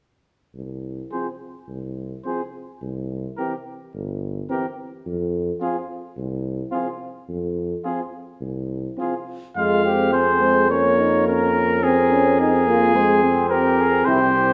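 A vintage-toned trumpet sits up front with the solemn, grave melody of this classical brass quintet excerpt, entering at 1.1 s over a tuba bass that begins at 0.5 s, joined by a distant, roomy flugelhorn second line, a dark, punchy French horn and a trombone with light vibrato in the background, all carried by a wet recital hall reverb as the passage moves into a new section at 9.6 s.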